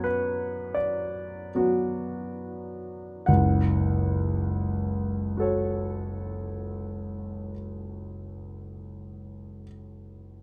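A warm concert grand piano carries this brief excerpt alone, its smooth, vintage tone sitting up front with a deep bass that reaches from F#1 up to F#5. It is a romantic classical nocturne in F# minor, mournful and yearning, moving in a slow, rubato 12/8 at roughly 20-31 BPM counted in dotted quarters, with the tuning set at A4 = 435 Hz. The opening passage slows down through its first 3.3 seconds over a B minor chord with F# in the bass, then settles onto F# minor as a new section begins and runs to 10.4 seconds. Close, detailed microphones capture the instrument within a light reverb, giving an intimate, unhurried sound. Cut from a longer piece, the fragment feels like a moment of lament caught mid-thought.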